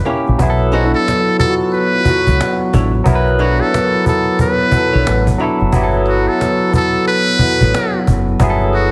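A buzzy, metal-muted trumpet with slapback echo carries a breathy, jazz-style melody through this sultry, soulful R&B and neo-soul excerpt at 90 BPM with a swung 16th feel, over a barky, lightly overdriven tine electric piano with phaser, a snappy cajon, a round, punchy dub bass and a dark, clean archtop guitar in the background that stops at 5.6 seconds, as Bm11 moves to Gmaj9, all in a small room with light reverb and a heavily compressed, radio-like sound.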